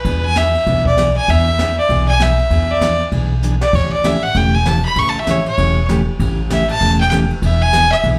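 Western swing country with a cheerful, swinging lilt, cut from a longer piece and heard live through a club's PA with light room reverb. A clear, nasal fiddle with light vibrato and a smooth top carries the melody up front as a solo, its slapback echo shared by the picked dreadnought acoustic guitar, which picks a full-bodied accompaniment over E7 moving to A7 and back. A woody, growly pizzicato upright bass thumps beneath, and a brushed jazz kit with dark cymbals and a high-tuned snare sits low, breaking into a fill at 3.4 seconds.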